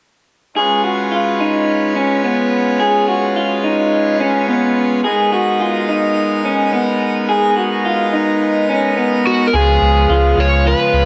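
A majestic, brilliant pipe organ holds sustained full-organ chords from 0.6 s, while a twangy, lo-fi electric guitar through a small old amp picks arpeggios in lush chorus and digital delay, the two moving between C#7 and G#madd9 in this hazy, melancholic dream pop fragment cut from a longer piece. A dark, overdriven slide guitar played with fingerpicks enters at 9.3 s with a delayed melody, and a round, mellow sub bass joins at 9.5 s as the harmony comes back to C#7. A wet recital hall reverb and digital ambience surround the music.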